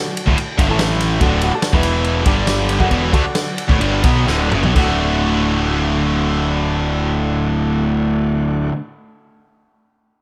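A woody upright piano opens this confident, swaggering classic rock excerpt in D major, tossing off a quick fill at 0.4 seconds as a vintage drum kit and a wall of overdriven guitars and bass crash in. The tempo moves between 122 and 144 BPM in a straight 4/4, and the pulse slows down through the opening section. Up front, a bright overdriven electric guitar with spring reverb drives the riff. A cranked stack guitar and a quiet, double-tracked crunchy guitar thicken it from behind, while a growling picked bass with its own overdrive anchors the low end. The drums sound natural and punchy, with dark cymbals and a medium-tuned snare, and they roll into a fill before dropping out at 4.9 seconds. From 1.2 seconds a very quiet tonewheel organ holds thick, lightly overdriven chords through a slow rotary speaker, and light reverb sets the band in a studio room.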